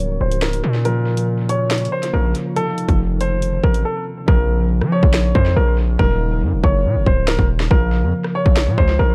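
The recording has a cold digital ambience and an echo-heavy mix, in this short section cut from a longer drill-style hip hop piece in Bb harmonic minor at 140 BPM in 4/4 with a half-time feel, tuned to A4 = 444 Hz. A polished baby grand piano carries a narrow melody through low-pass filtering and tape echo, while a thumb-plucked concert harp rings beneath it as accompaniment, also softened by filtering and tape echo. In the background, a deep, warbling pad of detuned sawtooth and sine voices with a sub octave holds moody sustained chords under chorus and reverb, sounding only until 4.3 seconds. Up front, a heavy, saturated 808-style bass growls with distortion and a noise layer, and an electronic drill kit punches in with a hard-clipped kick, a sharp snare, rim clicks, finger snaps and hi-hats, all treated with tape echo. A filter sweep runs through the first half as the chords move through Ebm7, Bbm and F7, and a brief break arrives at 3.9 seconds. 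After 4.3 seconds the hi-hats drop out as the chords return to Bbm and Ebm7, leaving an ominous, chilly mood.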